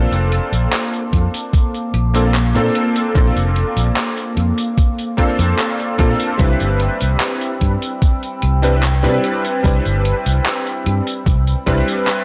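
A punchy fingered electric bass with an envelope filter and tube saturation sits up front in this nostalgic, woozy vaporwave fragment at 74 BPM in C major, moving from Bbmaj7 to Cmaj7 at 6.4 s. A bright, clangy electric grand piano with chorused unisons, 12-bit sampler grit and tape echo carries the accompaniment, while a dark, detuned, warbling pad with ring modulation and a slow attack holds sustained chords beneath it from 0.5 s. A gated 80s drum machine supplies handclaps, hi-hat and tambourine, and a thumpy, tape-warm electronic kick joins at 1.1 s, all captured as a dry, gritty cassette recording with light reverb.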